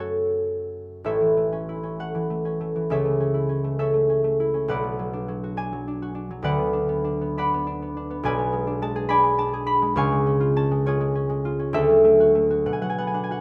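Flowing in a rubato 6/8 at roughly 55-72 BPM, this mysterious, wistful classical piece for solo concert harp in A major, cut from a longer work, places the mellow, ringing, fingerpicked harp up front across a span from A1 to C#6, captured by close, detailed microphones in light reverb as it moves from F#m through A, Bm and G#dim/B to C# and D before settling on Bm.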